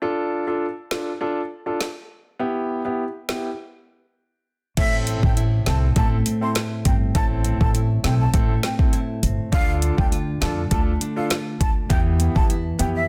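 Dancehall in A minor at 101 BPM, tough and sultry, cut from a longer piece: a concert grand piano with audible action noise and sidechain pumping opens over Dm and Em, joined at 0.9 seconds by an up-front electronic afro-pop kit with a deep kick, woody snare, metallic hats and crash, with a break at 3.6 seconds. At 4.8 seconds a breathy, distant jazz flute carries the melody with delay, while a fingerpicked nylon-string guitar arpeggiates and a dark, thumpy pizzicato upright bass on gut strings holds the low end through Am, Dm and Em. The mix is dry, dense and heavily limited.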